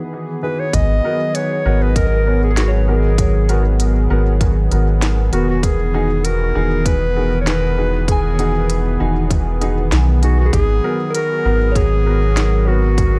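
From 0.7 s, a tight electronic kick and a kit of woody snare and low-pass-filtered smooth hats set a lightly swung 98 BPM groove in 4/4 alongside a deep, round dub sub bass sitting up front. Over it, this spacious, hazy ambient dub excerpt in G# minor moves between Emaj7 and G#m7: a close-miked clarinet carries a solo melody through dub echo, a detuned sawtooth analog pad holds chorused chords, and a dark upright piano adds echoing stabs. A very quiet, glassy harmonics texture drifts only through the opening 0.7 s, and from 2.1 s a vintage FM bell plays gentle, warbling arpeggios in the background under light reverb.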